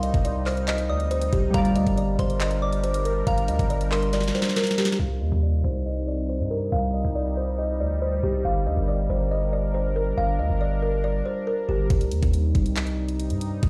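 A half-time trap groove at 139 BPM in 4/4 opens this brooding, hard-hitting hip hop excerpt in C minor, with a knocking kick, sharp snare, bright hats and handclaps up front. The drums end on a fill, drop out at 5.0 seconds during a filter sweep, and return at 11.9 seconds, while a deep, sine-like 808-style bass sustains throughout. Over these, a woody, hollow kalimba carries the melody, and a soft, pure synth bell sings a gentle second line in the background. A faint layer of glassy, detuned digital keys, an evolving, resonant sawtooth pad, and a brief nasal synth-brass stab fill out the sound, all set in a stony room ambience.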